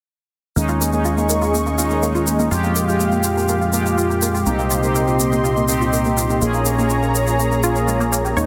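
Set in a moderate, huge ambient reverb and pressed into a dense, heavily limited modern master, this cinematic, dramatic melodic techno excerpt moves at 123 BPM in Bb dorian over chords running from Eb7sus4 through Fmadd9 and Cm to Bbm7. Bold, wave-folded analog synth brass stabs sit up front with chorus, vibrato and delay, while a lush, nasal unison pad sustains chorused chords above a fat, detuned sawtooth bass and a grainy, close egg shaker. A bright unison pluck spins phased, delayed arpeggios in the background, and an evolving analog drone with pulse-width modulation enters softly at 3.3 s.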